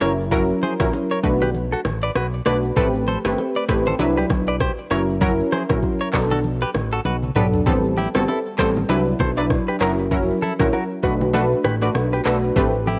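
A swung sixteenth-note groove at 98 BPM in 4/4 drives this hypnotic, sultry afrobeats clip, cut from a longer piece and captured as a home recording on cassette with digital ambience. An electronic afro-pop drum kit, re-recorded in a large room, supplies a knocking kick, handclaps, rim clicks, shaker and toms, with a fill between 7.1 and 7.7 seconds leading into the second section. Underneath, a fat analog bass built from detuned sawtooth and square waves sounds thick, nasal and saturated, its evolving tone shaped by a filter sweep. Up front, a round analog pluck with a noise layer and chorus carries the chords, cycling through F#7, Bm7, Am9 and Cmaj9#11, while a clean, twangy electric guitar recorded direct picks a compressed riff, colored by cassette tape and tape echo. Dry, close bongos and congas played with hard hands sit in the background, adding acoustic texture to the mix.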